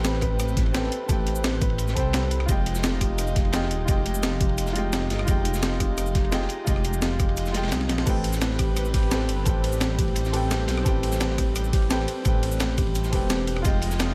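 A straight, rolling liquid drum and bass groove drives this melancholic passage, cut from a longer piece, with a knocking, overdriven electronic kick sitting at the front from 0.2 seconds and a gritty, pitched-up, sampler-style breakbeat kit scattering snare, hi-hat, ride, crash, rim click and cabasa around it. Behind them, a second breakbeat kit with a saturated, mid-forward snare and dark, rolled-off ride cymbals adds crunch from the background, and a drum fill arrives at 7.8 seconds. Underneath, a deep, rumbling detuned saw bass beats and sustains up front in the low register. A warm grand piano carries the accompaniment with long sustain and a digital delay, while a soft, felt-muted upright piano plays intimate arpeggios through tape echo, its action noise clearly audible. A lush, very quiet unison pad holds thick, bright chords shaded by chorus and phaser as the harmony moves from Am9 to Fm9 at 2.5 seconds and back to Am9 at 8.1 seconds, all in a dry, close sound.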